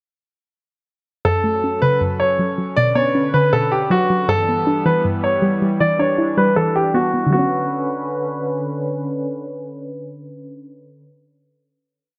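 Hard-hitting and menacing, this short trap and hip hop piece in B minor moves at 158 BPM with a half-time feel, opening at 1.2 s on a breakdown where a clear, polished concert grand piano sits up front with a looping melody repeated like a sampled loop, moving through F#m, Bmadd9, G6 and Em7. Beneath it a soft, round pluck with a dark, chorused tone plays a patterned eighth-note arpeggio, while a detuned sawtooth analog pad holds sustained chords with chorus and tremolo. The piano stops at 8.4 s, leaving the pluck and pad to ring out on a final Bmadd9 chord from 7.3 s, all set in a small room with light reverb and a low-pass filter.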